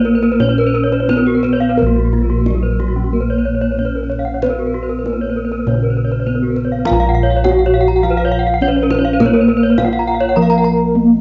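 This Balinese gamelan passage in Bb pelog opens at once with a bronze metallophone melody, two arpeggio lines and low bossed gongs, setting a hypnotic, shimmering mood at roughly 87-103 BPM in a straight 4/4. The melody metallophone, struck with padded disc mallets, sounds mellow and airy, its paired tuning producing shimmering beats. One arpeggio metallophone rings from the background with a wooden mallet and a boxy small-room colour, while the other uses a horn mallet for a bright edge. The bossed gongs sit up front, round, soft and beating under padded beaters, and a tight kendang played with hard hands sounds distant in a large room. At 1.8 seconds a further metallophone joins on accompaniment, horn-struck, close-miked, dry and full, and at 6.9 seconds the music moves into a new section. The light reverb and dull, home-taped cassette sound frame this fragment cut from a longer piece.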